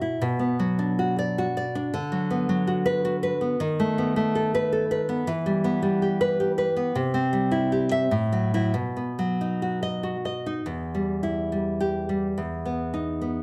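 Melancholic and passionate, this romantic piece for solo classical guitar moves in a rubato three-time, its harmony drifting from B minor toward E minor through chords such as B7/D#, C and F#m7/A before settling on Em and B/E in a closing passage from 10.7 seconds. The fingerpicked nylon-string guitar sits up front with a bright, deep classical tone, ranging from E2 to E5 across the whole 13.4-second passage. A moderate recital-hall reverb and a dark, warm production frame this fragment cut from a longer work.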